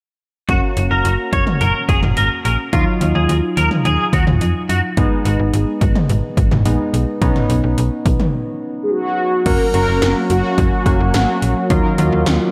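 Soaked in a dreamy plate reverb, this nocturnal, melancholic synth-pop excerpt moves at 107 BPM in straight 4/4, driven by tape-warm 80s electronic pad drums with a punchy kick, metallic hats and gated reverb on the snare and toms, and a snappy, metallic FM bass sitting up front. Round analog keys with a filter sweep carry the accompaniment, while a twangy, clean electric guitar adds a chorused second line that stops at 4.8 s. During a break, a dark, brassy synth lead with vibrato takes the melody at 8.8 s, and an evolving, resonant pad swells in behind it with sustained chords from 9.5 s.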